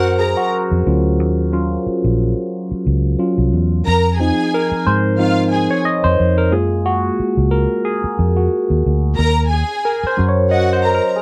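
Soul at 90 BPM in Eb dorian, cinematic and smooth, this excerpt features a barky tine electric piano soloing through a phaser over a round, punchy, foam-muted fingered electric bass and a soft-attack, sul tasto bowed string section, moving from Ebm7 through Fm7 and Gbmaj9 back to Ebm7 in a dry, close 1970s-style studio sound with light reverb.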